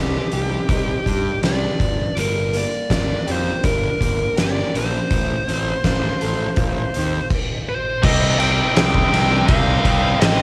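Lo-fi cassette home recording with light reverb carries this brooding, angsty quiet-loud alternative rock excerpt at 82 BPM in C dorian, where a dark, distorted high-gain lead guitar sings the melody over a fuzzed, overdriven picked bass, a slightly broken-up fingered guitar arpeggiating in the background until 7.3 seconds, and an oversized, up-front drum kit with a boomy kick, fat snare and dark cymbals pumping in a bright stone room from 0.3 seconds, before a biting overdriven guitar with spring reverb and two scooped high-gain guitars, one very quiet and one barely audible, join on a riff at 8.0 seconds.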